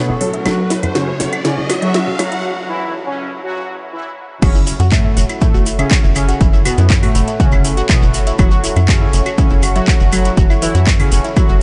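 Melodic techno with a hypnotic, melancholic pull, this excerpt opens on a build-up where a riser, a muted dub chord stab and a house kit fill with cracking snare and metallic hats sit under filter-swept synths. It then breaks at 2.4 seconds and drops at 4.4 seconds as an overdriven, punchy kick and a grainy shekere join the tight sequencer bass, the bold, detuned analog brass melody, a crystalline wavetable pluck, a round, nasal arpeggiated pluck and a deep, moody pad, the synths and bass pumping together in light digital ambience.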